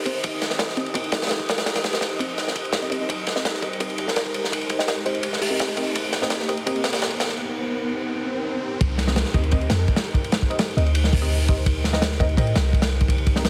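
A muted, detuned chord stab opens this drum and bass excerpt from a longer jungle track. It sits in the background on a Cm7 in C minor, with phaser and dub echo, as a filter sweep works across it. From the start it is joined by a deep, boomy 808-style bass with tube saturation and an airy, wind-like noise texture bathed in its own reverb. At 168 BPM in straight 4/4, a crunchy, gritty breakbeat kit sits up front, its tight kick, medium-tuned snare, dark cymbals and rolled-off top giving the frenetic pace a nostalgic tint. A very quiet, bell-like FM electric piano with chorus adds sparkling melodic fragments, while electronic risers, swells and downlifters shape a build-up. The breathy texture stops at 7.4 s, opening a short break, and the drop lands at 8.8 s, all held together by light small-room ambience and a heavily compressed, radio-like sound.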